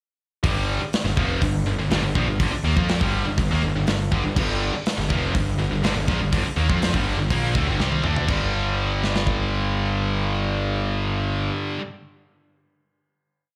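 Heard as a live club gig through the venue's PA, with small-room ambience and club reverb, this whole hard rock piece in G minor at 122 BPM drives aggressively from 0.4 seconds. A bright, high-gain distorted guitar with slapback echo leads a power-chord riff, backed in the background by an overdriven guitar carrying its own slapback echo and a tight, double-tracked distorted guitar, while a punchy fuzz bass sits up front doubling the riff in driving eighth notes. A gritty, saturated metal drum kit with a tight kick and rolled-off top pushes a big rock groove, then delivers a fill at 7.8 seconds before the band lands on a final G5 chord at 8.3 seconds.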